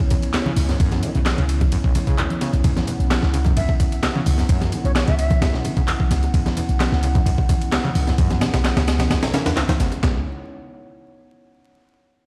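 A booming, deep 808-style bass with tube saturation sits up front in this energetic, raw breakbeat excerpt at 130 BPM in C# minor, joined by a gritty, compressed sampler-style break with a thumpy kick and high-tuned snare, plus a tape-toned analog drum machine adding handclaps and hi-hat. A squelchy, resonant acid bass riff with lush chorus and delay runs over a dark, detuned analog pad that pumps against the beat, while close, dry bongos and congas sit in the background. A reedy baroque flute, filtered through a telephone sound and 12-bit sampler grit, appears briefly from 3.6 to 5.5 seconds over C#m7 harmony, all heard as if played on a big sound system in a bare stone room with vinyl crackle.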